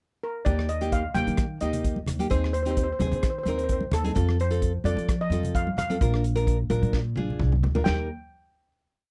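A dry, close studio sound with a 1970s feel frames this short, festive calypso piece, with a sunny mood and a light swing. A shimmering lead steel pan played with hard rubber sticks carries a motif-based melody in period phrases over bright fingerpicked nylon-string guitar chords, a woody, thumpy pizzicato upright bass line and a punchy, fat-snared drum kit with a rolled-off top. Soft-handed congas enter in the background at 1.1 seconds, and a drum fill from 6.9 seconds leads into the final chord at 7.9 seconds.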